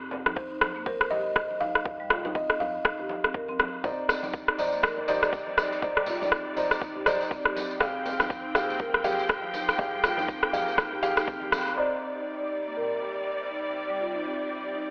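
Heard through a telephone-like filter and a moderate scoring-stage reverb, this hypnotic, spiritual afro house excerpt in C minor at 121 BPM swings over a deep, tape-warm kick, an up-front rim click, bright background congas and a round, dark FM bass, while mellow soft-mallet marimba arpeggios with tape echo pump beneath a buzzing, hollow kalimba melody that gives way at 3.8 seconds to lush, gritty bowed strings, intimate felt-muted piano stabs and a jingly tambourine, before the beat drops out near 11.6 seconds and filter sweeps on the marimba and piano carry the final stretch to 14.9 seconds.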